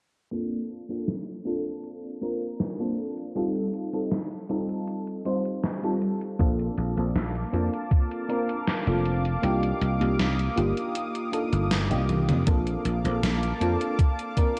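Vaporwave with a dreamy, woozy mood, cut from a longer piece: a round, mellow FM electric piano with phaser, chorus, sampler grit and tape echo opens over a filter sweep and a gated 80s drum machine of hi-hat, snare and toms; a punchy, growly thumbed slap bass and a thumpy electronic kick arrive at 6.4 s; a thick, detuned sawtooth unison pad joins at 6.9 s; and the kick drops out at 9.4 s until a drum fill leads into a brief closing passage, the whole mix sitting in a lush hall reverb and a muffled cassette-tape haze.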